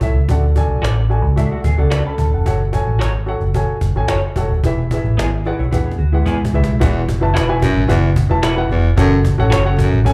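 A round, punchy, foam-muted electric bass sits up front in this joyful, danceable 1960s-style soul excerpt at 110 BPM, backed by a snappy cajon with snares, an intimate baby grand piano with audible action noise, and slightly broken-up, lo-fi guitar stabs, while a clean, chorused electric guitar riff hands over at 6.8 seconds to a breathy baritone saxophone with vibrato, the band heard live through a club PA.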